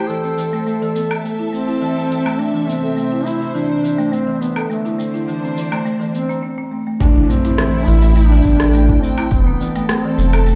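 Heard through a big sound system in a bare room with large studio reverb, this hypnotic, meditative organic downtempo excerpt in A minor at 104 BPM sets a distant duduk melody with scooped notes and tape echo over dark sul tasto strings that pump under a low-pass filter, woody marimba arpeggios with delay, a barely audible ringing quartz singing bowl and an organic electronic drum kit of cabasa, crisp hi-hat, rim click and woodblock, until a break at 6.4 s gives way at 7.0 s to a round, up-front analog bass, an overdriven deep kick in the background and an electronic impact.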